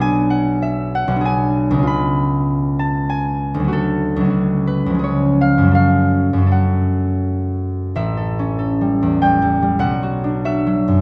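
A solo concert harp, fingerpicked and ringing, sits up front in this wistful, gentle classical passage cut from a longer piece. It moves in 3/4 with a flexible, rubato feel, and the harp spans a broad register from A1 up to B5. The harmony drifts from G#dim/B through C#7, D, F#m/C# and C# before settling on F#m, and at 7.9 seconds the music turns to a new section built on A7 and then Bm. A moderate recital hall reverb gives the acoustic harp a natural sense of space. The overall production is dark and warm, suiting the wistful, gentle mood.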